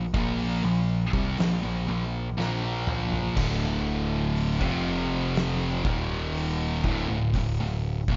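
A straight, slow 4/4 pulse drives this brooding, sludgy stoner and doom metal passage, cut from a longer piece, as power chords move from Bb5 through D5, F5 and Eb5 back to D5. A bright, double-tracked fuzz guitar carries the riff over two dark, thick fuzz guitars set in the background, while a growling, overdriven picked bass sits up front. An oversized, low-tuned acoustic kit with a fat snare, punchy kick, toms, hi-hat and crash rings in a stone room and plays a fill from 2.4 to 3.4 seconds, all under light studio reverb and a rolled-off top end.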